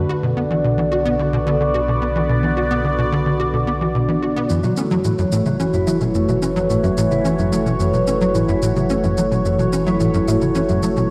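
Hypnotic and mysterious, this excerpt of ambient, sequencer-driven space music rides a tight, punchy sawtooth sequencer bass riff colored by ensemble chorus and analog delay, with a deep, round sine sub bass beneath an up-front, detuned, wave-folded resonant pad sustaining chords through chorus and phaser, while at 4.5 seconds a dark, clean, fingered electric guitar enters with delay-tinged arpeggios alongside tape-toned analog shaker and woodblock, the harmony shifting from Bm to F#m7 in a dreamy mix soaked in plate reverb.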